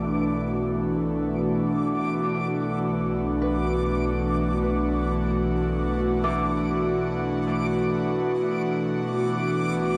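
Washed in a lush hall reverb and carrying the soft grain of a home cassette recording, this short ambient passage, cut from a longer piece, floats in free time with a reflective, serene mood. Up front, an airy, breathy pad holds sustained chords from B2 to F#4, its slow attack and long release softened further by chorus, resting on a D69/B harmony. Beneath it, a deep, rumbling drone sits on a low B, warbling and detuned with a dark, ominous, vintage weight. In the background, a concert harp rings out fingerpicked arpeggios between A3 and D6 through an analog delay, while a reedy, nasal hand-pumped harmonium breathes a steady B3 drone, fading in across the full 10.0 seconds. High above, a reversed, swelling texture adds a bright, dreamy granular shimmer on D6.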